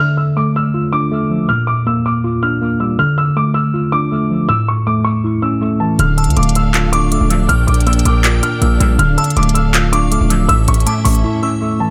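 A half-time trap beat at 160 BPM in D harmonic minor sets a dark, melancholic hip hop mood, as a dark concert grand piano melody and a worn, slightly out-of-tune tine electric piano, both filtered and soaked in dub echo, open over Dm, Bb6 and A chords before a heavy, saturated 808-style bass, crisp trap hats and handclaps and lush bowed strings join at 6.0 seconds, followed moments later by a glassy, chorused synth bell, with the drums and bass dropping out for a short break at 11.2 seconds in this echo-heavy excerpt.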